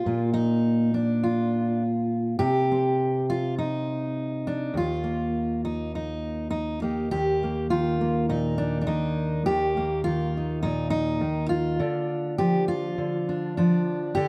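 A loose, rubato feel in 4/4 around 102 BPM carries this peaceful, pastoral folk excerpt in E-flat major, played on a single fingerpicked steel-string acoustic guitar that ranges from Eb2 up to G4. The dreadnought tone is full-bodied and up front, set in light reverb. Its harmony moves from Bbadd11 through a chordless stretch and an Eb5 before settling onto Eb at 7.1 seconds and closing on Bb/D.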